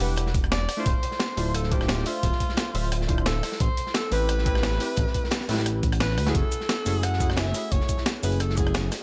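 Liquid drum and bass at 175 BPM in F# phrygian, lush and melancholic, where a breathy, scooped jazz-style alto saxophone sings the melody with delay over deep, warbling chord stabs with chorus and digital delay, an up-front detuned sawtooth-and-square synth bass, a thumpy pitched-up electronic kick entering at 0.3 seconds, a gritty sampler-style breakbeat with cabasa, hi-hat, rim click and snare, and a saturated, rolled-off acoustic break sitting in the background, all moving through Em9, Dm9, Am9 and F#m9 in a short cut from a longer piece.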